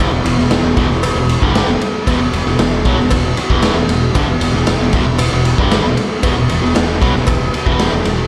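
A raw garage drum kit sits up front in this brooding, swaggering classic rock excerpt, its punchy kick, medium-tuned snare and ride cymbal sounding saturated and gritty with a rolled-off top from 0.3 s. Behind it, an overdriven cranked stack guitar and a distorted electric guitar play bright, picked riffs in a low register over a growly fuzz-fingered electric bass, all resting on a single chord. A very quiet vintage string machine cello patch adds mellow sustained chords through phaser and ensemble chorus, a close, dry cowbell sits faintly in the mix, and lush hall reverb lends a big arena sound marked by lossy compression artefacts.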